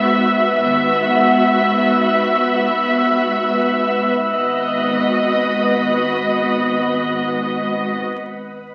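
This excerpt from a suspense film score opens in free time with muted violins carrying a veiled melody over con sordino violas, a close cello section holding a low G# and a pure, organ-like pad with chorus and built-in reverb, all dark and ominous in G# minor. The double basses join at 0.6 s in the background, and a ringing, fingerpicked harp adds texture from 1.1 s to 5.0 s as the harmony shifts from Eadd9/G# to G#m7 at 4.3 s. The whole sits in a wet stone room with the crackle of a very old 78 rpm record, giving the mysterious mood a faded, haunted cast.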